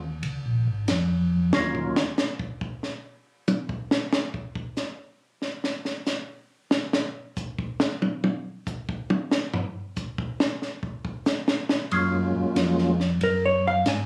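A compact cocktail drum kit carries this bluesy, late-night soul jazz organ trio fragment, taking a solo from 1.5 to 11.9 seconds with a high-tuned snare, a tight kick, toms, hi-hat and ride cymbal, all smooth and rolled-off at the top in a small acoustic room. The groove swings at 92 BPM in 4/4. A mellow tonewheel organ holds the bass line, with chorus vibrato and a slow rotary speaker giving its low notes a round, clean quality. A second, percussive tonewheel organ, dark and touched by third-harmonic percussion, states a brief melody phrase as the harmony moves from Bbm7 to Ebm7 and returns as the harmony settles on Gbmaj7 at 11.9 seconds. A fingered hollow-body electric jazz guitar enters at 13.2 seconds, adding up-front accompaniment in its upper register. Heard through moderate studio ambience as if captured on a phone in the room, the compressed sound stays intimate and subdued.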